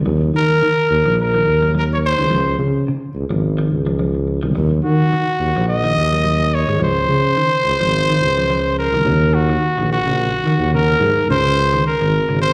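Afrobeat at 107 BPM in Eb dorian, this funky, defiant passage from a longer live set opens with a breathy, mellow tuba playing a jazz-style bass line with scooped notes and light vibrato, close-miked and up front. A growling, raspy trumpet carries the pop-style melody from 0.4 seconds, bright and gritty with plate reverb and slapback echo, while a clean, picked hollow-body electric guitar sits in the background with arpeggios colored by harmonic tremolo and tape echo. The chords move between Ebm and Db, shifting at 9.0 seconds to Ebm7 and Dbsus2, all heard through the venue's PA with moderate club reverb.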